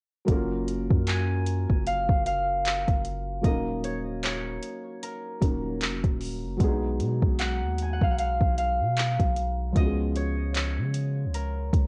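Smooth and romantic, this contemporary R&B fragment sets a felt-muted upright piano with a soft, dark touch and a deep, sine-like 808-style bass under a produced drum kit of soft kick, metallic hats and handclaps, while a ringing, fingerpicked concert harp carries the melody from 1.1 seconds over F#maj7, D#m7, B6 and C#7, all steeped in the dry, dulled sound of a home cassette recording.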